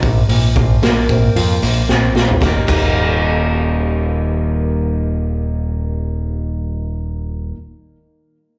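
A raw garage drum kit sits up front at the start of this short cut from a quiet-loud alternative rock piece, its punchy kick, medium-tuned snare, hi-hat, crash and toms sounding gritty and saturated with a rolled-off top, and a drum fill from 1.9 s leads into the shift from Bbsus2 to Eb at 2.4 s before the kit drops out at 2.8 s. Underneath, a growling picked electric bass carries the low end in a dark, round, overdriven tone, placed up front and playing on through nearly the whole passage. A bright, full-bodied dreadnought steel-string acoustic guitar picks arpeggios across its range, dressed in tape echo, slapback echo and plate reverb. The track moves at 113 BPM in a straight 4/4 in Eb major, with a bittersweet, restless mood. It sounds like a live gig heard through the venue's PA, with a touch of club reverb around a largely dry sound.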